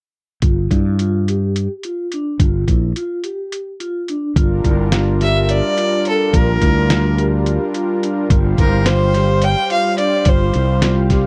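Brooding and driving, this progressive instrumental excerpt moves in 7/8 at 214 BPM counted in eighths, with a straight feel in G dorian. From the first moments a vibraphone with soft mallets rolls out mellow, ringing arpeggios, while a growly, bright fretless electric bass sits up front and a lo-fi sampler-style drum kit, pitched down and muffled with a thumpy kick and medium-tuned snare, drives alongside. At 4.4 seconds the harmony shifts from G7 to Gm7 and a smooth sawtooth pad with detuned chorus and a slow attack swells in to sustain the accompaniment. A dark, earthy violin takes the melody at 5.2 seconds, a single bowed player with light vibrato and a smooth top, placed close and forward. The chords settle onto Fsus2 over G near the end, and the whole is captured dry and close in a 1970s-style studio sound with little reverb.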